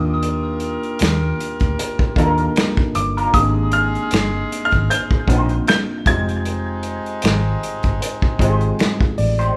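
A lightly swung sixteenth-note groove from an up-front soul drum kit with a tight kick, finger snaps, hi-hat and snare drives this sensual R&B and neo-soul excerpt, as a round, foam-muted fingered electric bass and a worn, slightly out-of-tune tine electric piano support an intimate grand piano melody with audible action noise and tape echo, jazz-style horn stabs colour the Ebmaj9, Abmaj9#11 and Fm9 changes, and a slightly broken-up electric guitar with wah adds a second line from 1.8 s, the band playing live together in a large studio room.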